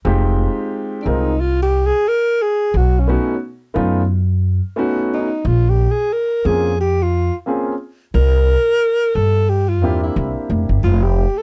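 A breathy alto saxophone carries the melody as a solo, entering at 1.0 s with a soft attack, subtone and vibrato, close-miked and up front in this smoky, cool jazz-hop excerpt. Beneath it, a dark grand piano supplies mellow, vintage-sounding chords with long sustain, moving through Fm7, B9, Bbm9 and C9 and falling silent at 10.8 s, just as the harmony turns to Fsus2. A plucked upright bass with steel strings gives a woody, thumpy low end, its tone thickened by tube saturation, and it stops at 11.2 s. The groove sits in 4/4 with a 58% swing on the sixteenths, giving the hip hop pulse a relaxed lilt. The recording is dry and gritty, with little reverb, transformer saturation and nothing above 7.8 kHz, lending the clip a hazy, late-night character.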